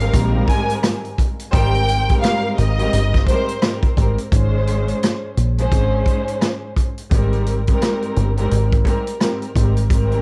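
Recorded at home on cassette with light reverb, this boom-bap hip-hop fragment moves at 86 BPM in Ab major with a swung, soulful and nostalgic lean. A punchy, rolled-off vintage drum kit and a round, foam-muted dub bass sit up front beneath veiled con sordino strings, while a lush, distant violin section carries the melody with analog delay until 3.6 s. A tight, mellow trumpet section adds a brief background stab at 1.5 s, over chords drifting between Fm11/Ab, Abmaj9 and Bbm7/Ab.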